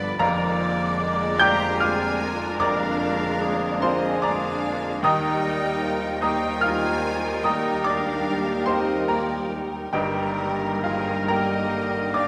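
Passionate and lush, this romantic excerpt for piano and orchestra unfolds in a slow, rubato 12/8 in Eb major, with the clear, up-front baby grand carrying the melody across a broad range while a distant, intense violin section shares it with vibrato in the background. A clarinet, a second violin section and, from 0.2 seconds, a very quiet airy, hollow flute section add second lines, as a rich, smooth viola section and a vintage-toned bassoon provide accompaniment. Punchy trombones and warm French horns hold very quiet sustained chords over cellos and double basses, all bathed in a wet recital hall reverb as the harmony moves from Bb7/F to Eb at 5.0 seconds and Eb/G at 9.9 seconds.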